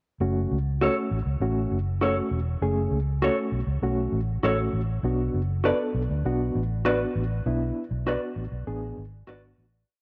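Urgent and driving, this short soul piece moves at 99 BPM in a straight 4/4, sitting in F# minor and shifting from F#m to Bm at 5.0 seconds. A vintage muted fingered electric bass carries a dark, round, punchy, syncopated line up front, foam-muted and amped with a melodic bent. A reed electric piano plays close-voiced chords in quarters, its reedy, clean tone colored by a fast tremolo through built-in speakers. From 0.8 seconds a mellow electric guitar adds short, compressed chops on the backbeat, fingered and clean. Light reverb gives the parts a little space, and the piece fades out from 7.5 seconds to its close at 9.9 seconds.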